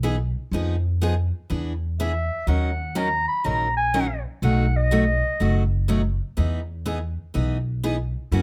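Swinging and playful, this short excerpt of acoustic string swing in the jazz manouche tradition moves at 123 BPM in 4/4 with a lilting swung eighth-note feel. A bright, picked steel-string acoustic guitar carries the accompaniment throughout, its finger squeaks caught by close, detailed microphones, while a woody, thumpy upright bass played pizzicato on gut strings anchors the low end from the first beat. At 2.0 seconds a growling clarinet takes the solo melody, its subtone raspy and gritty, with light vibrato and scooped notes in a jazz style, before dropping out at 5.7 seconds. The harmony moves from Emaj7 through Fm7b5, E7, D#m7 and B7 before settling back on Emaj7. The mix carries light reverb, and the clarinet has a distant, roomy quality even as it sits up front with the guitar and bass.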